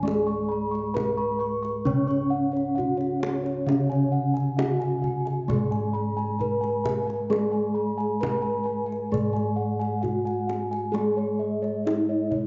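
Javanese gamelan in a ceremonial, shimmering mood at a stately 66 BPM in 4/4, where bronze metallophones with paired tuning carry a ringing melody, a lower accompaniment and high arpeggios, their shimmering beats joined by one up-front, wooden-mallet voice. Round, mellow bossed gongs add their own arpeggios and a dark, smooth bass line, and a tight kendang joins at 0.1 s, all blooming in a resonant hall with a 1.8-second reverb tail across this 12.5-second excerpt.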